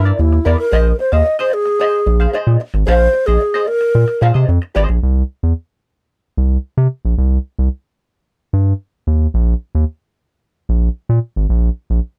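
The sound is dry and close, like a 1970s studio session, with little reverb around the players. This energetic funk cut, taken from a longer piece, moves at 112 BPM in a straight 4/4 and is tuned slightly low to A4 = 439 Hz. A wooden-headed alto flute carries the melody up front, airy and warm with an unsteady, tongued vibrato, playing its solo from 0.2 to 4.2 seconds. Beneath it, a vintage hollow-body jazz guitar adds clean, picked, dark chords through a wah, moving from a rootless C9 to Bb9sus4 before it stops at 5.0 seconds. A round analog bass sits prominently in the mix, deep and sine-like with a fast attack and long sustain. Once the chords fall away, the bass carries on alone until 12.0 seconds.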